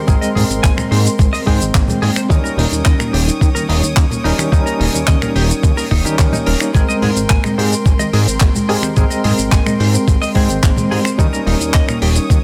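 A fat, detuned sawtooth analog bass drives this sunny, feel-good nu-disco excerpt at 108 BPM in Ab major, joined by a thumpy, gritty electronic kick and a dry, damped 70s drum kit of finger snaps, handclaps, hi-hat and shaker, with tube shaker and congas in the background, while a barky, overdriven tine electric piano with fast tremolo and dub echo comps over Abmaj9 and Eb7 chords, a twangy, clean direct-recorded electric guitar riffs through lush chorus and dub echo, a soft, round pluck plays very quiet arpeggios, and an earthy, biting chamber violin section holds sustained chords that pump with the sidechain, all in a dense, heavily limited modern master.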